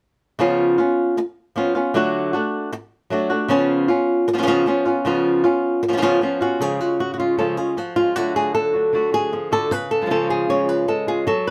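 Mournful and intense, this short flamenco cut from a longer piece moves at 154 BPM in a straight 4/4, centred on C# phrygian dominant. A fingerpicked acoustic flamenco guitar carries the melody from 0.4 seconds, its warm, up-front tone ranging from C#3 to C#5 as the harmony shifts between C#7 and D. At 6.6 seconds a second fingerpicked flamenco guitar joins with stabs, sitting lower in the mix and spanning C#3 to F#4, as the chords settle on C# and D. The melody guitar carries through to 11.5 seconds, while the stabs end at 11.3 seconds. A moderate studio reverb, with a short 0.5-second decay, surrounds the two guitars.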